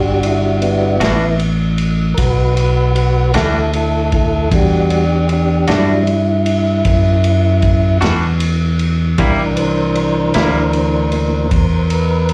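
Smoky, soulful slow blues in 12/8 at 51 BPM in E minor, cut from a longer live club performance heard through the venue's PA, where an up-front tonewheel organ with key click and slow rotary speaker takes the solo over sustained chords moving from Em9 to C7 at 9.2 seconds, backed by a bright, growly fingered electric bass, a muffled lo-fi vintage drum kit with dark ride cymbal, tight kick and snare, and a clean, compressed semi-hollow electric guitar with harmonic tremolo and slapback echo that plays from 1.0 to 10.6 seconds.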